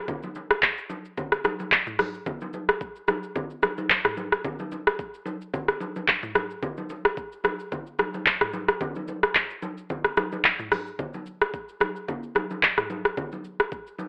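An up-front, electronic R&B drum kit leads this deep, soulful amapiano piece at 110 BPM in 4/4 with a gentle 16th-note swing, its knocking kick, smooth hats, handclaps, rim clicks, shaker and toms carrying a tape-warm, produced sheen. Vintage acoustic congas, struck with hard hands and sounding ringing and band-limited, sit further back in the mix, both parts running from 0.1 s to 14.1 s. The whole sound has a telephone-like quality and a moderate plate reverb, with a drop spanning the opening and a new section arriving at 11.0 s in this short cut from a longer track.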